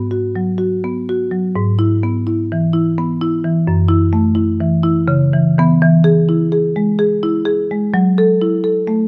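Contemporary classical for solo marimba, this hypnotic, flowing 9.1-second excerpt in a rubato 3/4 at 84 BPM has the woody, dark padauk bars played with medium mallets sitting up front under close, detailed microphones and light reverb, spanning F#2 to A4 as the harmony drifts from G#m7 through E/G#, F#m7 and C#m7 to E before settling back on F#m7 at 7.9 seconds.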